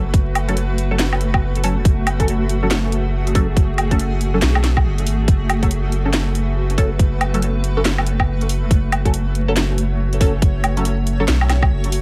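Dark and brooding, this cut from a longer deep dubstep piece moves at 140 BPM with a half-time, swung feel, sitting on a single F# minor chord in a tuning of A4 = 444 Hz. A granular cloud pad holds sustained chords throughout, its blurred, evolving texture softened by its built-in reverb, while a filtered dub chord stab punctuates the harmony with muted, detuned sawtooth plucks coloured by phaser, analog chorus and dub echo until 11.2 seconds. Underneath, a soft dub sub bass stays round and deep, built from triangle and square waves and held up front. The electronic kick drum is tight and prominent, joined by a garage drum kit of handclaps, hi-hat, woodblock and a cracking snare with warm hats. The room is nearly dry, and a layer of vinyl crackle adds a dusty grain over the whole track.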